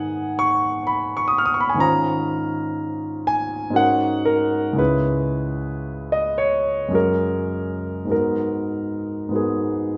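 Classical impressionist solo piano in a slow, rubato 3/4, nocturnal and mysterious, as a clear, natural concert grand sits up front with a deep bass, drifting through extended minor and added-ninth harmonies in a moderate scoring-stage reverb across this 10-second fragment of a longer piece.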